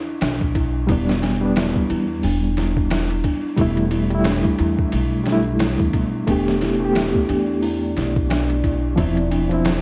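A large celesta opens this smoky, hypnotic trip hop excerpt, its bell-like, delicate arpeggios carrying vintage 12-bit sampler grit and tape echo. Upright bass and a sampler-style drum kit join almost at once, settling into a swung 89 BPM groove in 4/4 in E phrygian. The pizzicato bass sounds woody, and the pitched-down, compressed kit brings a thumpy kick, a medium-tuned snare, hi-hat and ride cymbal, all roughened by overdrive. At 0.9 seconds a reedy electric piano enters as the most prominent part, shimmering with fast tremolo and tape echo over harmony that moves from Em7 to Emadd11 and on to Dm7/E. A deep, dark ambient pad with chorus slips in far in the background at 7.2 seconds, holding a single sustained note. The whole mix is dreamy and soaked in plate reverb, with vinyl crackle beneath it.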